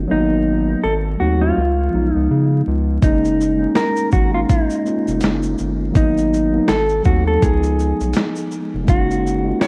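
A mellow tine electric piano behind a low-pass filter and a round, saturated analog bass open this nostalgic lo-fi hip hop excerpt in F# major at 82 BPM with a swung 16th feel, joined at 0.1 seconds by a dark, clean electric guitar melody bathed in spring reverb over G#m9, G#7b9, C#7 and F#69 chords, before a gritty, overdriven boom bap sampler-style kit with a thumpy kick, snare, hi-hat and shaker enters at 3.0 seconds, all wrapped in worn cassette tape warble and vinyl crackle.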